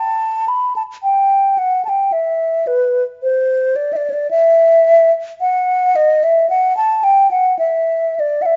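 A mellow, hollow wooden flute plays alone from the first moment, tracing a serene, flowing baroque-style fantasia in a slow, rubato 3/4 at 55 BPM, its line ranging from B4 to B5. Close-miked and up front, the flute has a crisp attack, an airy woody tone and vibrato, set in a wet stone room whose reverb lingers about 1.3 seconds. The sound carries nothing above 7.6 kHz, and this short excerpt, lifted from a longer piece, ends at 8.6 seconds.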